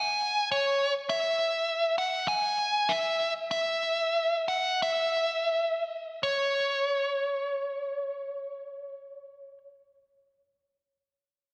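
A nasal electric lead guitar with a parked wah sits up front, carrying the melody with an overdriven, picked tone that rides high between C#5 and G#5. This short rock passage in 4/4 with a straight feel is cut from a longer piece, and its mood is cinematic and hopeful. The guitar is the only part and plays from the opening through 9.6 seconds, its sound thickened by slapback echo and digital delay. The pace slows between 1.1 and 6.2 seconds, and at that point the opening section gives way to a second idea. A wet scoring-stage reverb gives the whole recording a big arena sound.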